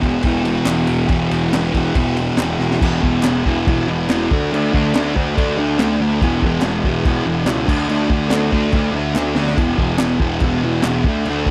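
Rowdy and swaggering, this garage rock excerpt at 142 BPM drives a thick, double-tracked fuzz guitar riff up front over E5 and D5 chords, backed by a growly, overdriven fuzz bass, a crunchy breakbeat drum kit with dark cymbals, a high-tuned snare and a punchy kick, drum fills at 2.6 and 9.2 seconds, and hollow group handclaps in the background from 0.7 seconds, all in light reverb.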